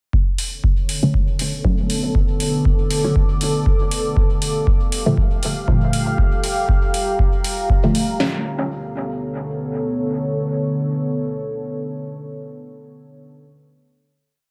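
A steady four-on-the-floor kick drives this deep, hazy dub techno piece, with a gentle swing on the sixteenths and a crisp snare marking the backbeat from a booming analog drum machine that sits up front. Metallic open hi-hats from an electronic hi-hat part add a programmed shimmer, and both drum parts carry the sound of being re-recorded in a large room before they stop at about 8.3 seconds. A filtered dub chord stab enters at 1.0 seconds with sparse, muted sawtooth hits that pluck and decay, one chord shape moved in parallel, coloured by a phaser, a moving notch, sidechain pumping and trailing dub echoes while a filter sweep shapes it through the groove. Alongside, a dark ambient pad of detuned sawtooth unison and a sine sub octave swells in slowly and sustains with chorus, built-in reverb and its own sidechain pumping, sitting up front in the mix. The harmony moves from Bm9 to Gm9 and back to Bm9, where the pad and stabs ring out together as a final chord over the last few seconds. 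A lush hall reverb soaks the whole mix in a dreamy haze.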